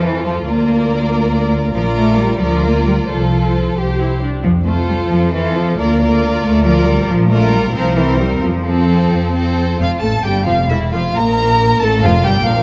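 A lively, graceful classical-period movement for string orchestra opens at once with its full body of strings. The music is in F major and a lilting 6/8, moving at 85-95 dotted-quarter beats per minute with a rubato feel, and tuned slightly low to A4 = 436 Hz. A violin section carries the focused, vibrato-rich melody high above a second, more expressive and close violin line, while the violas fill in a smooth-topped accompaniment. Beneath them, the cellos give an even, rich bass, and the double basses add a warm, soft-attacked foundation. The harmony circles through Bb, F and C chords, reaching C7 before settling on F at 8.4 seconds, and the opening section returns at 9.8 seconds before this excerpt from a longer piece breaks off at 12.6 seconds. A wet concert hall reverb surrounds the bowed ensemble, and vinyl crackle sits over the recording.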